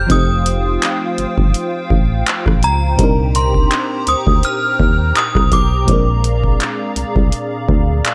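Contemporary R&B in C minor at 83 BPM with a light swing, sensual and longing, where a chiming, inharmonic FM synth chime with chorus and delay carries the high melody over a warbling vintage FM electric piano with phaser, a hollow, flute-like pad with chorus and sidechain pumping, a punchy, round FM bass and a booming analog drum machine of deep kick, metallic hi-hat, handclaps and rim click, all set in digital ambience as the chords move from F7 to Cm7 at 3.0 seconds and Bb7 at 5.9 seconds in this short cut from a longer piece.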